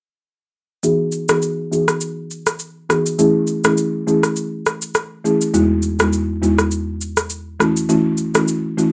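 Romantic and breezy, this short excerpt from a longer afrobeats piece moves at 102 BPM in 4/4 with a gentle swing on the sixteenths, set in E major with tuning slightly below standard pitch. A buzzing marimba played with soft mallets carries the accompaniment from 0.8 to 8.9 seconds, its hardwood bars giving a woody, mellow, rounded tone that sits dark and dry through a low-pass filter, with a filter sweep running across its whole span. Alongside it, an electronic shaker and rim click supply the drums over the same stretch, sounding electronic, produced and up front. The harmony drifts through lush chords, moving from Emaj7 to Eadd11, then Emaj9, and settling on A6/E. A moderate studio ambience with a short decay wraps the parts in an intimate room sound.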